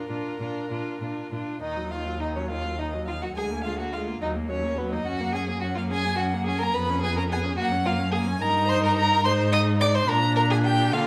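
Quick classical-period string quartet movement in E-flat minor, spirited and lively, moving in a rubato 6/8 at 71 BPM counted in dotted quarters, cut from a longer piece. The first violin carries the smooth, warm melody with vibrato, while the second violin adds a focused second line, the close viola supplies bowed accompaniment, and the up-front cello anchors the bass with soft attacks, expressive portamento and a rich tone. The harmony shifts from E-flat minor toward G-flat and closes on B-flat, all set in a wet recital-hall reverb.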